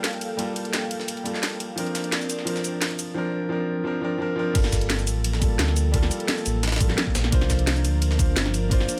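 Liquid drum and bass at 173 BPM in G minor, dreamy and soulful and cut from a longer piece: an up-front grand piano with tape echo and a soft, breathy, chorused pad in the background carry Gm9 and C9sus4 chords over a layered electronic kit with a cracking snare and bright hats, plus a gritty, pitched-up, sampler-style jungle kit tucked behind, until the drop at 4.5 seconds brings in a deep sine sub bass with octave and a knocking kick, set in a light reverb.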